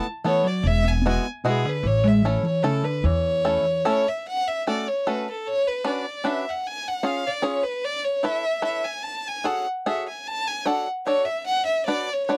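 A dry, close recording in a 1970s studio style, with a moderate booth ambience, frames this nostalgic, bittersweet musette waltz at 150 BPM in a straight 3/4. A single violin carries the melody up front, its bowed tone rich, intense and biting, with vibrato and an airy quality to the bow. Beside it, a bluegrass banjo played with fingerpicks gives bright, twangy, percussive accompaniment, also placed up front, and stays throughout the excerpt. A clean, dark hollow-body electric jazz guitar adds a fingered second line only at the opening. An up-front upright bass is plucked with a woody, growly sound on steel strings from 0.6 s to 3.6 s. The harmony starts in A major before turning toward F# minor at 4.2 s, and the passage is cut from a longer piece.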